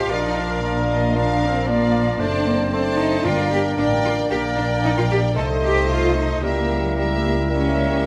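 Nearly the full orchestra sounds together from the first moment of this short, stormy passage cut from a longer classical-period movement in G minor, taken at a quick 114 BPM in 4/4 with a restless, rubato feel. Clear, smooth violins carry the melody high above a lush second violin line in the background, while a small, distant flute group and a vintage-toned oboe with light vibrato add supporting lines. A mellow solo bassoon and a very quiet, even viola section fill in the accompaniment, and a roomy French horn section holds sustained chords. The bass is focused and close, with cellos and an up-front double bass section giving the texture its weight. Timpani played with medium mallets on calf heads enter from 3.2 to 4.0 seconds on G as the harmony settles onto G minor. The chords darken toward a diminished seventh near the end, and a recital-hall reverb gives the ensemble a spacious, live ring.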